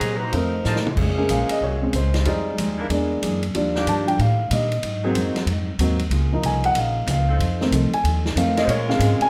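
A grand piano, up front with short sustain, takes a solo from 1.0 s in this swinging, brassy big band jazz cut, after a brief opening of clear saxophone-section melody touched with plate reverb, vintage trumpet-section stabs with a soft attack, and a drum fill at 0.7 s, while a smooth-topped saxophone section holds sustained chords, a woody pizzicato upright bass anchors the low end, a full-bodied picked acoustic guitar with finger squeak sits in the background, and a swinging kit with dark cymbals and a boomy kick fills a moderate studio room.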